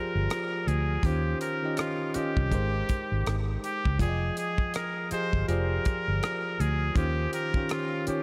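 R&B and neo-soul at 81 BPM with a 16th-note swing, this smooth, late-night excerpt sets a nasal, straight-muted trumpet melody with vibrato and tape echo over bell-like tine electric piano, a round, foam-muted fingered bass entering at 0.2 seconds, and a damped 70s kit of hi-hat, tight kick and rim click from 0.3 seconds, moving through Bb13, Eb13, Abmaj7 and Fm9 chords in a dreamy mix soaked in lush hall reverb.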